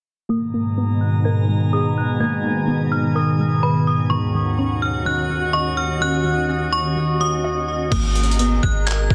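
This atmospheric cloud-rap excerpt of hip hop feels blissful and dreamy, moving at 126 BPM in 4/4 with a half-time feel, tuned to A4 = 435 Hz. From 0.3 seconds a metallic, inharmonic FM bell rings out a full-bodied melody through chorus and digital delay, and from 0.4 seconds a glassy, ethereal FM pad holds sustained chords up front, its detuned sine tones opening slowly and pumping under sidechain. Beneath them, a warbling, lo-fi pluck sits dark and vintage in the background, playing arpeggios with a filter sweep that runs until 7.9 seconds, and a calm texture of drifting glass harmonics floats in with slow-blooming overtones and reverb. The harmony moves from G#madd9 to D#m7 and back. At 7.9 seconds a gritty, pitched-down sampler-style trip hop kit arrives with a thumpy kick, hi-hat, handclaps and crash, overdriven and up front, alongside a deep, boomy 808-style bass on G#1. The whole piece sits in light digital ambience under a dense, heavily limited modern master.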